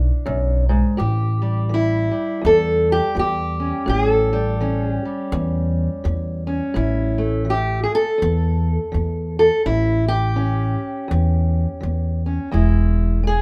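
Acoustic country blues with a laid-back, soulful mood, this excerpt moves at 83 BPM in 4/4 with a swung eighth-note feel in A mixolydian, tuned slightly low at A4 = 439 Hz. A fingerpicked steel-string parlour guitar carries the melody with a dark, boxy tone, while a pizzicato upright bass with a woody sound and steel strings holds down the low end; both play up front throughout. Light reverb surrounds the duo as the harmony opens on E7, settles on A7 from 1.0 seconds, and turns to E at 12.5 seconds.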